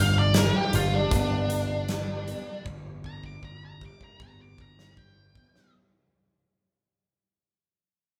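Quiet-loud alternative rock with a restless, anthemic mood, this fading clip, cut from a longer piece, features a dark, up-front octave-fuzz lead guitar soloing over fingerpicked steel-string acoustic arpeggios, a growly overdriven picked bass, and a huge, punchy arena drum kit that enters at 0.3 seconds and moves into a fill from 2.7 seconds, all played live in one large studio room with moderate reverb.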